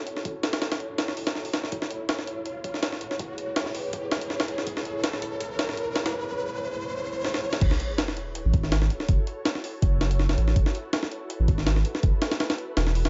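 A gritty, pitched-up jungle drum kit drives this frenetic, dark drum and bass excerpt at 163 BPM with a light swing on the 16ths, its thumpy kick and compressed breaks sitting up front under an ethereal, detuned pad of sustained F#m7 and C#m7 chords that carries ensemble chorus and its own reverb while a filter sweep builds alongside an electronic riser. A drum fill at 7.2 seconds leads into the drop at 7.6 seconds, where a sub drop impact lands and a deep, saturated sub bass enters up front beneath the kit. The whole mix has a light digital ambience and a rolled-off top end that keeps it dusky.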